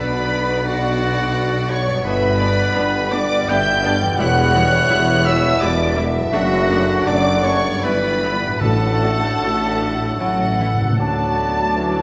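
In a rubato 3/4 at 74-89 BPM, this lyrical classical excerpt in D major sets a lush, vibrato-laden, distant violin section on the melody over a second line from a closer violin section with portamento, a clear clarinet, a pure large flute ensemble and an oboe, with a very quiet viola section, sustained chords from the French horn and trombone sections, ringing fingerpicked concert harp arpeggios, and a bass of mellow tuba, rich chamber cello section and double bass section; calf-headed timpani enter at 8.6 s with a fill at 10.2 s, a soft-attack bassoon joins at 11.0 s as the chords move from Bm through G, Em and A to D, and the whole ensemble sits in a wet scoring stage reverb.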